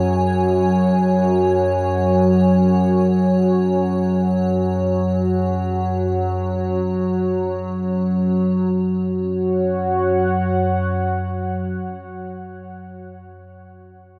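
An up-front analog drone built from sawtooth and pulse waves, with slowly evolving pulse-width modulation and chorus, anchors this ominous, vast dark ambient excerpt in free time between F#2 and F#3. Above it, a bright, resonant sweeping pad of detuned sawtooth, triangle and sine layers holds sustained chords with a filter swell, moving from F#sus2 to F#5 at 8.7 seconds, while a faint, icy, crystalline glass pad rings on C#5 with ring modulation and wave-folding until 8.8 seconds. A huge, wet reverb of 7.8 seconds and a dark production surround the whole piece, and the ambient pad fades out across its opening stretch.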